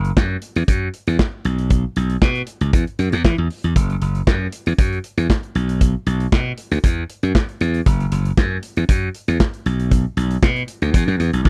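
A dry, close recording in a 1970s studio style carries this danceable, funky early-eighties boogie funk cut at 117 BPM, where a growly, bright slap bass, direct and amped and up front, ranges from F#1 to E3 over a dark, smooth acoustic drum kit with a tight kick, medium-tuned snare, hi-hat, handclaps and a rolled-off top, both parts playing together throughout the 11.5 seconds.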